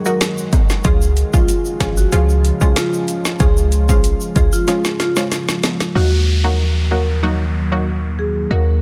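A deep, moody ambient pad opens this sultry, bouncy dancehall excerpt, its detuned sawtooth chords sustained under chorus and built-in reverb and pumping against a sidechain. Almost at once, a woody marimba with medium hard mallets carries a short melody. A punchy, bright chord stab with a filter pluck and chorus joins it, along with a small-room tube shaker and timbales and an electronic afro-pop kit up front, with deep kick, snare, metallic hats and finger snaps. A boomy sine 808-style bass arrives at 0.8 seconds and sits loudest in the mix. A drum fill closes the first section before the kit and hand percussion drop out, and from 6.0 seconds an electronic downlifter joins the pad, marimba, stab and bass over a dense, heavily limited master with light reverb.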